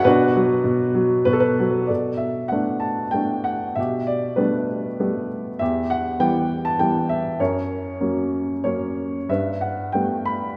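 An upright piano opens the recording on a B minor chord, its tone clear and woody, and it carries this brief classical fragment on its own from start to finish. The mood is bittersweet and brooding, moving in a lyrical 3/4 at roughly 91 to 102 BPM with a free, rubato feel. After a short opening phrase, a longer passage begins at 1.9 seconds, shifting through Bm7, Gadd9 over B, E minor and F sharp before settling on Gadd9 at 9.3 seconds. The piano ranges from E2 up to B5 and sits up front with an open quality. A generous, wet reverb with a 1.9-second decay surrounds it, giving the sound the air of a church or concert hall, and the passage is clearly cut from a longer piece.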